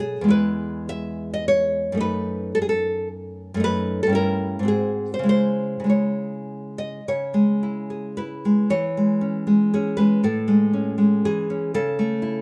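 A fingerpicked nylon-string guitar, full-bodied and warm, carries this short romantic classical solo, sitting up front and moving between low E2 and high E5 in a nostalgic yet sunny mood. The rubato 3/4 pulse drifts between roughly 97 and 124 BPM as the harmony passes through diminished colours and a G#7 before settling into C# minor, then opens onto an Amaj7 near 10.2 seconds. A moderate stone-room reverb lends the live, single-room performance an airy glow.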